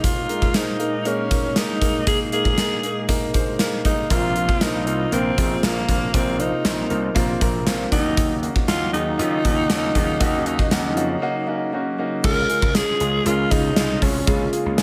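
A breathy, raspy alto saxophone carries the melody in this moody, nostalgic slice of 1980s-style pop, its scooped notes and pop-style vibrato bathed in shimmer reverb. Beneath it, a clear concert grand piano plays intimate accompaniment with audible action noise and deep bass, sharing that shimmer, while a brassy analog pad holds detuned sawtooth chords in the background, softly attacked, evolving through a filter swell and thickened by chorus. An up-front gated drum kit drives a straight 118 BPM in 4/4 with a punchy kick, medium-tuned snare and bright cymbals ringing in a stone room. At 4.1 seconds, an overdriven slap bass enters, direct and amped, adding a gritty punch. The harmony moves from Absus2 through Bbsus2 and Ebm7, a break arrives at 11.2 seconds, and a new section opens on Db at 12.2 seconds before this cut from a longer piece ends.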